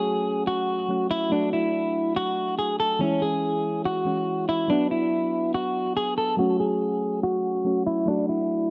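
A clean electric guitar and soft synth keys with an electric-piano character open together, setting an eerie, menacing hip hop mood over a half-time feel. The guitar carries the melody up front, its compressed tone softened by a low-pass filter and trailed by digital delay. Beneath it, the round, warbling keys add chorus-tinged accompaniment with a vintage, full-bodied quality and notes that strike quickly and then decay. The harmony moves through F#m, D, C#m and Bm before returning to F#m at 6.4 seconds, where a filter sweep marks the start of a new section. Light reverb and digital ambience give the short fragment a dark, warm production.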